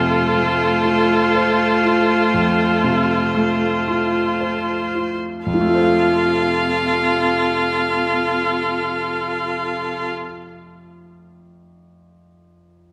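A lush scoring-stage reverb surrounds this tender excerpt from a slow romantic movement for piano quintet in F major, unfolding in a rubato 12/8 at roughly 36-44 beats per minute and slowing through its opening 5.5 seconds. A focused, vibrato-rich violin carries the melody over a cello second line with a smooth top and a more distant second violin, while a full-bodied viola sits up front in the accompaniment beside a clear, vintage-toned concert grand with deep bass. The strings fall away at 10.1 seconds, leaving the piano to sound alone until 12.9 seconds.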